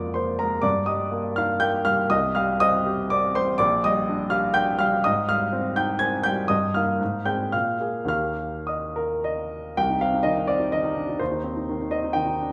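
Bathed in a lush recital-hall reverb, this short passage from a longer romantic character piece for solo piano pairs a polished, present, up-front grand piano spanning Bb1 to Ab6 with a hopeful mood, moving in a flexible rubato 3/4 at 102-132 BPM through Eb major harmonies from Bb7/F to Eb/G and Abmaj7, settling home on Eb at 8.1 seconds before turning toward C minor from 9.8 seconds.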